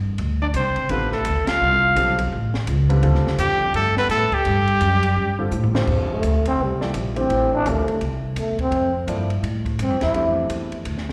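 Heard live through a venue's PA with a moderate club reverb, this searching, open modal jazz excerpt swings at 169 BPM, where a woody, thumpy upright bass and a dark, smooth cocktail drum kit sit beneath a vibrato-rich trumpet melody with scooped notes, a growling trombone second line and a polished, short-sustained grand piano accompaniment, the trumpet, trombone and piano each carrying slapback echo, until a drum fill leads into a raspy trombone solo at 5.9 s as the harmony moves from G9sus4 to Fmaj9.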